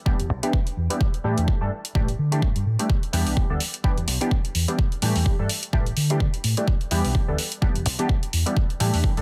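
Funky and groovy, this short cut from a longer filtered disco house track moves at 127 BPM in 4/4 with a 57% swing on the sixteenths, set in E minor and tuned slightly sharp to A4 = 444 Hz. A fingered electric bass runs underneath for the whole 9.2 seconds, dark, round and amped, pumping against the sidechain and dulled by a low-pass filter. Up front, a polysynth comps between Em7 and A7sus4 with a fast attack and sustained, detuned sawtooth tones edged by ring modulation, sine and wave-folding, dressed in chorus and phaser, with its own sidechain pumping and a low-pass filter sweep. The electronic kick sits forward and punchy, layered and tape-warm with a large-room character. An overdriven analog hi-hat enters at 0.2 seconds, while the mix overall stays dry, with very little reverb.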